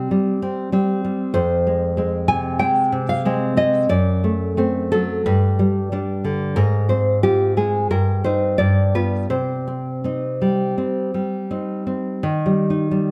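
A fingerpicked nylon-string guitar plays alone and up front, its warm classical tone marked by audible finger squeaks, in this wistful, melancholic romantic piece in C minor, tuned to A4 = 437 Hz and taken from a longer work. The 4/4 pulse moves with rubato between 81 and 97 BPM as the harmony passes from C minor through F minor, D7 and G back to C minor, reaching Eb at 12.2 seconds. A moderate recital-hall reverb with a 1.5-second decay surrounds the instrument.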